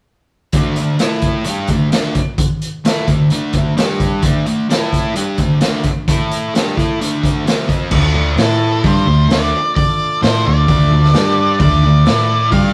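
A straight 4/4 pulse at 130 BPM drives this heavy, brooding blues rock and southern rock cut, a short section lifted from a longer piece in D minor. From 0.5 seconds, a raw garage drum kit pounds up front with a boomy kick, a medium-tuned snare, hi-hat, crash and dark cymbals, all saturated and gritty in a pumping small-room sound. A thick, double-tracked fuzz guitar carries the riff alongside it, moving through D5, A5 and G5 power chords. At 7.9 seconds the music shifts into a new section: a vintage foam-muted bass adds a round, punchy low end, and an overdriven tonewheel organ sits in the background holding sustained chords, its key click, chorus vibrato and slow rotary speaker giving a percussive, churning body. An octave-fuzz lead guitar joins at 8.4 seconds with a dark melody colored by slapback echo. A moderate stone-room reverb wraps the rough rehearsal-room recording, lending the whole trio a close, raw weight.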